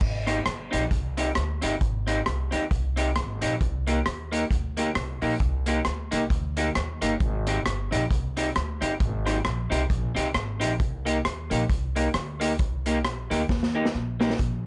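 A swung ska groove at 134 BPM in 4/4, with a lilting shuffle on the eighth notes, drives this short, energetic and mischievous clip cut from a longer piece. A vintage drum kit sits up front in a small, pumping room, its punchy kick, medium-tuned snare, rim clicks, hi-hat and dark crash cymbal rounded off by a rolled-off top, with a fill closing things out from 13.5 to 14.4 seconds. Underneath, a plucked upright bass on gut strings gives a thumpy, woody low end. An electric guitar through a small old amp supplies the accompaniment from 0.3 seconds, its picked tone bright, twangy and slightly broken-up with a lo-fi edge. The harmony alternates between Abmaj7 and Cm7, and light reverb with a dulled top end keeps the sound compact and close.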